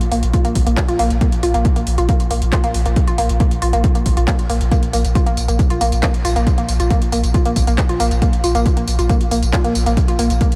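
A woody, wave-folded pluck sits up front in this dark, hypnotic stretch of driving peak-time techno, its percussive, evolving tone shaded by chorus and an analog delay as it pumps against the sidechain from 0.1 seconds onward. Beneath it, a deep, round sub bass holds a sustained, mellow low end through a low-pass filter, breathing with the same pumping motion. A punchy, layered electronic kick drives the straight 4/4 pulse from 0.3 seconds, while a techno kit of handclaps, metallic hi-hats and tambourine fills in the top, its hats and percussion ducking with the sidechain. Both drum parts carry the slightly boxed character of being re-recorded in a small room, and a light reverb with digital ambience frames the mix. Cut from a longer piece, this short section lasts about 10.6 seconds.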